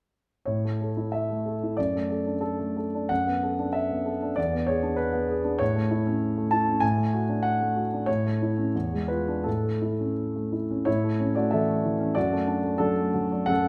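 Moderate recital hall reverb surrounds a warm concert grand piano, set up front with a deep bass, in this short passage cut from a longer romantic character piece for solo piano. The playing is lyrical and hopeful, in 2/4 with a flexible rubato feel, and spans from E2 to A5 as it moves through its opening section from 0.5 s. That section begins again at 10.9 s, just before the passage breaks off at 13.7 s.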